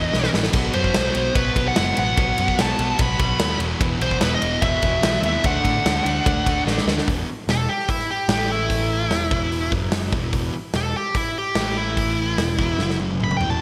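Hard rock at 147 BPM in a straight 4/4, heavy and menacing, settling into E minor at 7.1 seconds in this short section cut from a longer piece. A big acoustic rock kit sits up front with a punchy kick, a medium-tuned snare and a rolled-off top, its gated reverb giving each hit a boomy 1980s weight, and fills starting around 0.1, 6.7 and 12.8 seconds mark the turns. Beneath it, a growly, amped picked bass anchors the low end, while three background riff guitars stack up: a sludgy overdriven part, a hollow-body semi-hollow guitar shimmering with lush chorus, and a bright, double-tracked distorted guitar that drops out at 7.1 seconds. A high-gain lead guitar with distortion and delay carries the melody up front from the start, then launches into a solo at 7.1 seconds over power chords on E, A and F#. The production is glossy and digital, with a lush hall reverb lending the whole mix a large, polished scale.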